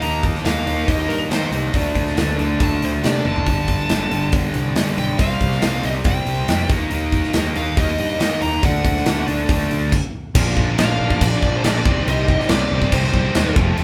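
A dark, high-gain lead guitar solos through this brooding, angsty stretch of quiet-loud alternative rock, played live in one room over up-front acoustic drums with bright cymbals and a punchy kick, two thick fuzz guitar riffs, a growly, round overdriven bass, and a lo-fi, slightly broken-up arpeggio guitar through a small old amp that drops out at 3.5 seconds, before a stop at 9.9 seconds gives way to a very quiet, flute-like tonewheel organ on a slow rotary speaker from 10.4 seconds.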